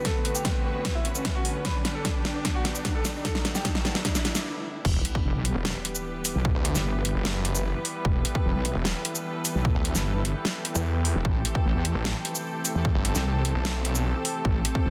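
A dense, heavily limited mix with light reverb carries this aggressive, chaotic heavy wobble dubstep cut at 150 BPM in a half-time feel in E minor, opening on a build-up where a clear, vintage grand piano melody under a filter sweep and a background riser ride over dark, sul tasto chamber strings, a deep, moody ambient pad and a drum fill from the punchy kick and dubstep kit with its huge snare and metallic hats. After a brief stop, the drop lands at 4.8 seconds with an impact as a saturated, chorused wobble bass enters, joined at 5.6 seconds by a snarling, growling distorted saw bass, while the strings and pad pump against the kick. The harmony moves from Bm7, G and D in the build to Em and then Am7 at 11.2 seconds.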